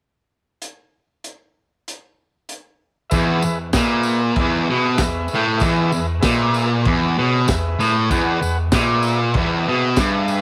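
A crunchy, gritty breakbeat drum kit opens this raw, swaggering garage rock excerpt at 0.6 s, its punchy kick, high-tuned snare and dark cymbals sounding boxed into a small room. At 3.1 s a bright, double-tracked fuzz guitar bursts in up front with a low, distorted riff, while a vintage combo organ holds mellow sustained chords with a light vibrato. A jingly tambourine sits distant in the background of an otherwise dry mix.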